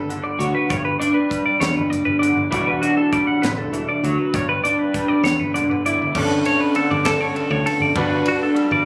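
In a straight 6/8 pulse, this bright, intricate fragment of math rock and midwest emo sets a slightly broken-up, lo-fi electric guitar laying down accompaniment through a small old amp with analog chorus against a twangy, clean twelve-string electric guitar spinning arpeggios in the upper register with subtle chorus, both up front. Underneath, a punchy, direct fingered bass and a polished fusion kit with a high-tuned snare, dark cymbals and an airy room sound hold the groove as the harmony moves from Gmaj7 through Em9 and G6 before shifting to Bm9/G at 6.2 seconds and settling on Gmaj9. The whole thing sounds as if captured on a phone in the room, with club reverb, light reverb and compression.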